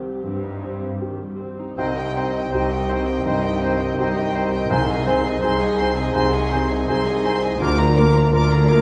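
At a rubato 82 BPM in 4/4, this sorrowful, bittersweet film-score passage in C minor is cut from a longer piece, moving from C minor through Ab/C at 4.7 seconds to Bb/D near the close. A clear, polished baby grand piano and a soft-attacked, expressive viola section open together in the background, joined almost at once by a lush, distant cello section holding the bass. At 1.8 seconds the full orchestra arrives: a rich, focused violin section carries the vibrato-laden melody high above, while a smooth, even second violin section, a pure metal concert flute, a lightly vibrato oboe and a very quiet, close-miked clarinet weave second lines beneath it. A mellow, vintage-toned French horn section sustains chords, and a double bass section with a smooth top deepens the low end alongside the cellos. Timpani struck with medium mallets sound briefly in the background from 4.7 to 5.8 seconds, and the whole ensemble sits further back in a wet scoring-stage reverb.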